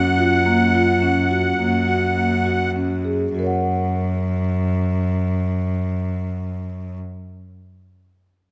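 Hopeful yet restless, this short excerpt of contemporary chamber music moves in an uneven 5/4 at 104 BPM with a straight feel, centered in F# major. A reedy, shimmering musette accordion carries the melody up front, sounding at F#5 until it falls silent at 2.7 seconds. Beneath it, a marimba played with medium mallets spins airy arpeggios from A#3 to F#5 and continues through to 7.3 seconds, outlasting the other parts. A bright, biting cello supplies the bass on F#2, bowed by a single player with light vibrato and an intense, up-front presence until 7.0 seconds. The opening slows over its first 3.3 seconds on an F#maj7 chord before settling onto plain F# as a new section begins, all set in a moderate concert hall reverb.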